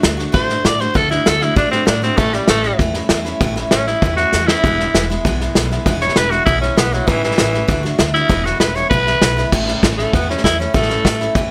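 A rollicking, retro rockabilly excerpt at 196 BPM in A major opens with a vintage drum kit, thumpy pizzicato upright bass with woody gut strings, and a bright, full-bodied picked steel-string acoustic guitar. At 0.3 seconds a raspy, gritty tenor saxophone takes an up-front solo that runs to 9.5 seconds over D, A and E chords, while the drums, with their punchy kick, dark cymbals and pumping small-room sound, add a quick fill at 4.3 seconds. The dry recording keeps the sax and drums close and present before a brief closing section arrives on A.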